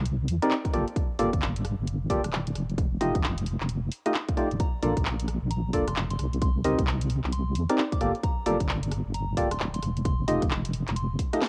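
Soulful and sunny, this short cut from a longer piece is a swung two-step UK garage groove with a relaxed, shuffling feel. A deep, wobbling sawtooth-and-sine bass with chorus sits up front from the start, dark and sustained beneath a cycle of lush minor-ninth and major-seventh chords. A punchy electronic kick, re-recorded in a small room and carrying the grain of cassette tape, enters at 0.7 seconds, while a garage kit adds a cracking snare, handclaps, hi-hat and rim clicks. A hollow, percussive organ stab with a noise layer and lush chorus punctuates the harmony up front. At 4.6 seconds a soft, pure FM synth bell joins in the background, its mellow tone trailing through an analog delay. The whole track has the light reverb and intimate character of a home recording on cassette.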